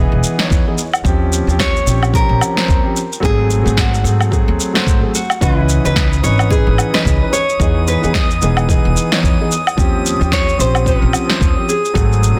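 Sunset chillout at 110 BPM with a gentle 16th-note swing and a wistful mood, where a fingerpicked nylon-string guitar with audible finger squeak carries the melody over a dark, mellow grand piano with audible action noise, both touched with tape echo, while a woody, thumpy pizzicato upright bass and layered electronic drums with a deep kick, punchy snare, shaker and woodblock keep time, a glassy, drifting harmonics texture with chorus enters softly at 5.7 seconds, and the whole excerpt sits in light studio reverb under a dense, heavily limited modern master.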